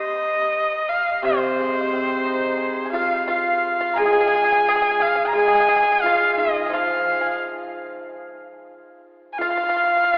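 A rich, biting bowed erhu leads this graceful, wistful Chinese traditional chamber fragment at a rubato 89 BPM in 4/4, its melody marked by light vibrato and portamento over a silvery, ringing steel-string zither accompaniment that stops at 8.7 seconds, while a woody, airy kalimba and a dry, percussive pipa add second lines from 2.9 seconds, all bathed in a wet cathedral reverb with a telephone-like sound.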